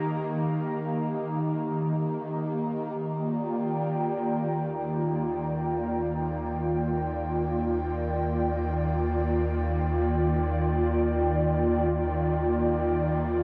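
Ambient in free time and Eb major, tuned to A4 = 442 Hz, this weightless, luminous excerpt is led by an up-front, breathy pad with chorus, cassette tape and plate reverb holding sustained chords over a very quiet, string-like bowed drone with vibrato, while a round, deep analog bass enters at 3.0 s as the harmony shifts from Eb to Ebmaj7, all set in a wet small room and captured on a home cassette recording.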